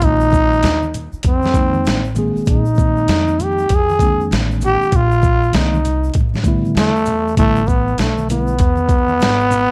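A small room ambience and a layer of vinyl crackle frame this cool, smoky jazz-hop cut, taken from a longer piece and moving at 98 BPM in 4/4 with a sixteenth-note swing. Up front, a growling trombone carries the melody as a jazz-style solo, its raspy, close-miked tone full of vibrato and scooped notes. Beneath it, a mellow tine electric piano heard through its built-in speakers supplies clean accompaniment before dropping out at 8.5 seconds. A woody pizzicato upright bass with steel strings anchors the low end, while a compressed, gritty boom bap sampler-style kit, re-recorded in a large room, pushes a thumpy kick, medium-tuned snare, hi-hat and shaker forward in the mix. Tube shaker and congas sit close yet in the background, and the harmony rests on A#9sus4 before shifting to A9sus4 at 6.1 seconds.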